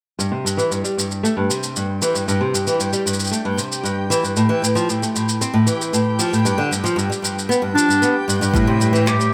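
A fingerpicked flamenco guitar sits up front through this autumnal, wistful folktronica excerpt in A minor at 115 BPM, its arpeggios passing through a low-pass filter sweep and a digital delay over rootless Am7 and Fmaj7 chords before moving to G5. A shaker and finger snaps keep a straight 4/4 pulse beneath it with a warm, rolled-off top. From 1.2 seconds a reversed, detuned texture with a slow attack and granular grain hangs dreamily in the background, bathed in its own reverb. Near the close a mellow clarinet enters at 7.7 seconds with a short, distant, classical-style melody carried by digital delay. At 8.5 seconds, as the harmony returns to Am7, a bowed cello adds a biting, vibrato-laden bass note alongside a single deep, tape-tinged electronic kick drum, all set in light studio reverb.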